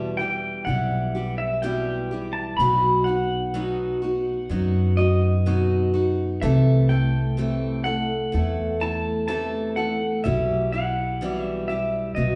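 Heard from further back in a large, reverberant studio, this intimate, reflective fragment of acoustic folk moves at a slow 63 BPM in E minor, with a clean, compressed pedal steel guitar carrying a high melody through volume swells, slide and slapback echo over a picked steel-string acoustic guitar with old strings and a dark, woody pizzicato upright bass, as the chords pass from Em to B to Am/C and Em/B.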